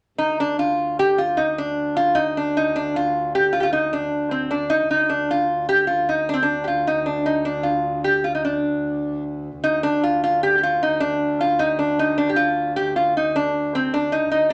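Washed in a wet small-room reverb, this fragment of an ancient, driving medieval dance in 3/4 puts a bright, nasal metal-body resonator slide guitar up front on the melody, played with fingerpicks, over a distant, woody bowed viola da gamba drone on D2, while an airy alto recorder with vibrato and chiff slips in only at 14.3 s.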